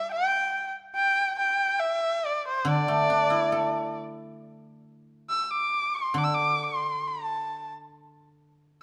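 A bowed erhu and a fleeting guzheng touch open this graceful, pastoral excerpt of Chinese traditional music, the erhu carrying a warm, smooth melody rich in vibrato and portamento while the guzheng's ringing, silvery fingerpicked accompaniment returns at 2.6 s and carries on alone after the erhu stops at 7.7 s, both parts up front in the moderate reverb of a scoring stage.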